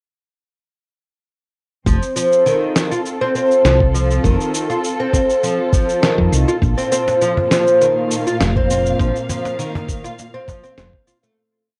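A straight 4/4 groove at 101 BPM starts at 1.9 s with a thumpy, gritty electronic kick and a fat-snared electronic shaker and snare drum under an up-front, dub-style line on round, hollow-bodied fretless electric bass, while a plectrum-plucked oud spins a 12-step arpeggio loop that drifts against the bar and a dark, lush studio string section holds slowly shifting chords in F major, moving from F to Bb5, with a cajon's woody slaps and bass tones joining at 7.1 s before this earthy organic downtempo piece fades out from 8.2 s, its small-room, homemade cassette sound carrying a warm, tape-worn character.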